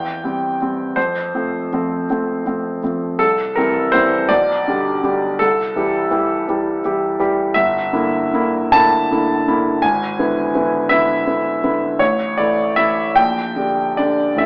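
Heard through a thin, AM-radio-like filter and a moderate recital-hall reverb, this 14.5-second fragment of a bittersweet, passionate romantic character piece for solo grand piano moves in a slow, rubato 6/8 at about 47-56 dotted-quarter beats per minute. The piano sits up front and intimate, with audible action noise and long sustain, tuned to A4 = 439 Hz and spanning G1 to A5 as its harmony drifts from C major through Em7b5/G and E7/G# toward A5 and Gm/Bb.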